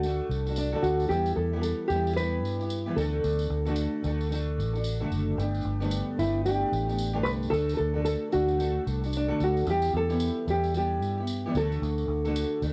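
Acoustic pop with a carefree, heartfelt mood at 112 BPM and a swung sixteenth-note feel, this home cassette excerpt sets a dark, woody, thumb-plucked nylon-string guitar melody with old strings over a full-bodied, double-tracked fingerpicked jumbo steel-string guitar, a round, punchy, foam-muted vintage electric bass and a jingly tambourine placed distant in a large room, with the two guitars bathed in plate reverb as the harmony moves between D, Em and Gadd9.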